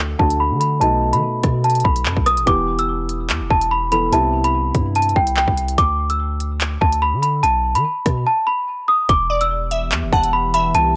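A dry, gritty recording carries this menacing, tense drill cut at 145 BPM in a half-time feel in E minor, opening under a filter sweep across its first 2.5 seconds. A deep, mellow 808-style bass and an up-front electronic drum kit with a hard-clipped kick, crisp hats, handclaps and rim clicks drive it, while a delicate, bell-like celesta carries the sweet, bright melody through tape echo and a dark, filtered grand piano accompanies until 5.8 seconds. Near the end a crystalline, chorused wavetable pluck adds a second line from 9.3 seconds, and a moody, full-bodied ambient pad holds sustained chords from 9.6 seconds.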